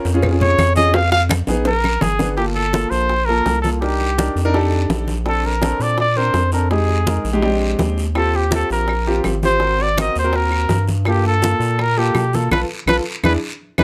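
A fiery, driving Afro-Cuban jazz excerpt in G minor at 166 BPM opens on natural-sounding grand piano chords and bright, damped congas, joined at once by a deep, wave-folded analog bass up front, round low-tuned cowbell and bongos, a raspy guiro and woody claves. From 0.4 seconds a warm trumpet with vibrato takes a solo over a drum fill, then carries the melody up front as the harmony moves through rich extended chords such as Gm9, Cm9 and Bbmaj9. The claves drop out at 2.0 seconds and return at 8.2 seconds, and a band accent lands at 12.5 seconds.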